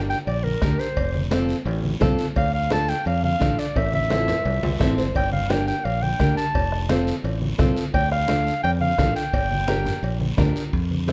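Driving and fiery, this cumbia in G dorian moves at 172 BPM in a straight 4/4, with an up-front clarinet carrying the melody over a direct, fingered electric bass and a fingerpicked nylon-string guitar with fresh strings, while a close, dry bombo anchors the groove beneath low-tuned congas, ringing metal-shell cowbell and timbales, and a raspy, distant guiro, all set in a large studio reverb, with a drum fill from 3.8 to 5.2 seconds and a brief guitar fill at 4.6 seconds in this section cut from a longer piece.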